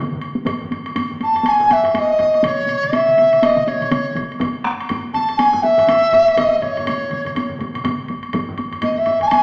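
Japanese traditional taiko drum ensemble music, ceremonial and driving with a swung sixteenth-note feel, where several taiko groups struck with hard sticks, some close and dry and others vintage and band-limited, plus one heavier-sticked group sitting in the background, join a woody woodblock from the start before a mellow large dizi enters up front at 1.2 s with a bamboo tone, buzzing membrane, tongued notes and vibrato, the whole fragment, cut from a longer piece, carrying wet large-studio reverb and a live-room, small-speaker sound.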